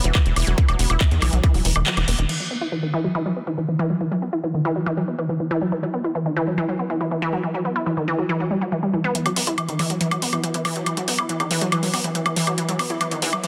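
A straight 4/4 pulse at 140 BPM drives this psychedelic, alien trance fragment, where a bright, wave-folded unison pluck riff with sidechain pumping and digital delay runs throughout, a tight, nasal sequencer bass and an up-front kit of metallic hats, handclaps, crash and woodblock drop away at 2.3 seconds and return near 9.3 seconds for a filter-swept build-up, and a tight electronic kick thumps only at the opening drop, all set in a lush hall reverb under a dense, heavily limited master.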